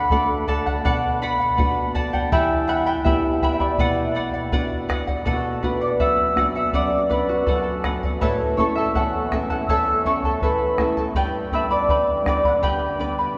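A wet cathedral reverb with a long 7.3-second tail surrounds this short cut from a longer Andean folk piece, recorded in a church or concert hall. At 81 BPM in a straight 2/4, in B minor tuned to A4 = 438 Hz, the mood is earthy and wistful. A concert harp carries the melody with a thumb-plucked, ringing tone, while a mellow large quena plays a second line, its pure, straight, tongued wooden tone sitting distant in the background. A charango fingerpicks shimmering double strings, some octave-doubled, and a dark, small-sounding nylon-string guitar thumb-plucks the low accompaniment. A deep acoustic bombo enters at 0.1 seconds and stops at 12.8 seconds, while the harmony moves from D and B minor through E minor, then shifts to A and G in the second section that begins at 5.3 seconds.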